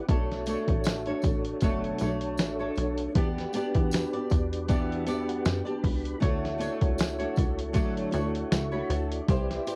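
A hazy, laid-back bedroom-pop fragment opens on fingerpicked flamenco guitar with finger squeak and fresh strings, made warbly by analog chorus and cassette-tape drift, beside a soft, flute-like tonewheel organ turning through slow rotary vibrato; a muffled, pitched-down sampler drum kit with a thumpy kick and tape-warm compression sits up front over lightly swung sixteenths alongside a punchy, plucky analog bass, both arriving at 0.1 seconds, joined by a jingly tambourine in the background from 0.5 seconds, while the organ adds a fill at 3.9 seconds, all captured at home on cassette with light reverb over Bm9, Em7 and Dmaj7 chords.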